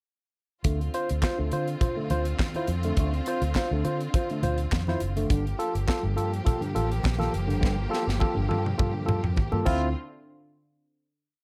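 A tight funk drum kit drives this short, glamorous disco piece with a four-on-the-floor kick, sixteenth-note hi-hats, a high-tuned snare layered with handclaps and bright cymbals, moving into a fill from 7.6 seconds before the final hit at 10.0 seconds. Up front beside it, a punchy fingered bass through an envelope filter plays a syncopated line with chromatic approach notes, while a barky tine electric piano adds a percussive, clean keyboard groove over Dm7 and Gm7 chords. Lush bowed strings hold sustained chords with vibrato, and very quiet, close and dry congas slap on two and open on four, all within a light small-room ambience.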